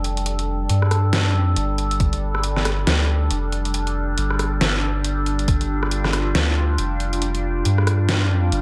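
A round, soft sub bass sits up front throughout this meditative, cavernous deep dubstep excerpt, its triangle and square wave tones sustained beneath a half-time, swung groove. An electronic drum kit with a deep snare, rim clicks and hi-hats sounds layered and recorded in a large room, while a muffled, pitched-down kick thumps in only at 2.0 and 5.5 seconds. Above them, a resonant sawtooth and sine drone holds a G5 chord with moving overtones, slow attack and long release, coloured by chorus, phaser and its own reverb, and the mix carries a light reverb.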